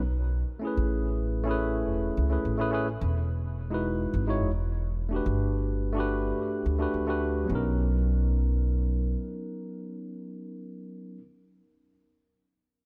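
Sunset chillout in B major at 107 BPM, blissful and smooth, where a woody, thumpy pizzicato upright bass sits up front from the start until 9.1 seconds while a bright, barky tine electric piano through a combo amp enters at 0.6 seconds with tape echo, moving through Amaj9, Emaj9 and Gmaj9 before arriving on Bmaj9 at 7.5 seconds, all in a small room with light reverb.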